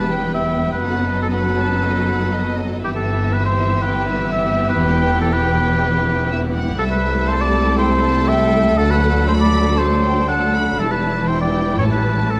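From the opening moment, a full string orchestra and a solo oboe sound together in this fast, dramatic Romantic movement in E minor at 120 BPM in 4/4, its rubato feel lending a lively, graceful sweep to the 12.4-second passage cut from a longer work. The oboe sits up front with a warm, lightly vibrato tone and a smooth top, carrying a prominent second line alongside the ensemble. The first violin section takes the melody high in its range with a dark, woody, lush vibrato sound, while a second violin section, even and smooth, adds another line further back in the mix. Beneath them, the violas supply a clear, focused accompaniment, and the cellos and double basses anchor the bass with rich, bowed tone, the cellos close yet in the background. The harmony moves from E minor through B7 and A minor toward D7, E minor 7 and a closing A7, all set in a moderate recital-hall reverb.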